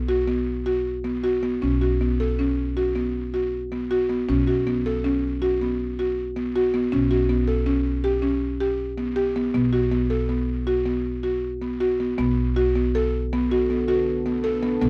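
An upright bass plucks a low B beneath a buzzing, woody marimba played with soft mallets in up-front arpeggios, setting a pensive, restless mood in this contemporary chamber excerpt in 7/4 at 159 BPM in B minor, moving through Bsus2 and a rootless A9/B before a deep, dark ambient pad with chorus and reverb enters on Bm7 at 13.3 seconds, all captured with close, detailed, dry microphones.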